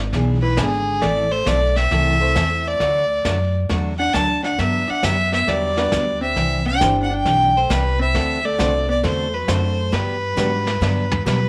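A swung 4/4 at 135 BPM drives this playful western swing snippet in G major: growly pizzicato upright bass and a vintage brush kit with a punchy kick and rolled-off top carry the groove, while a bright jumbo steel-string acoustic guitar, with audible finger squeak, picks through the chords from E7 through Am, D and Cadd9 to Gmaj7. A biting, earthy fiddle with light vibrato leads the melody, joined by a dark, compressed hollow-body electric guitar on a second line. An intimate upright piano with short sustain and audible action noise sits in the background, playing briefly near 2.2 seconds and again from 5.8 seconds, before a drum fill at 10.4 seconds, all in a small room with moderate spring reverb.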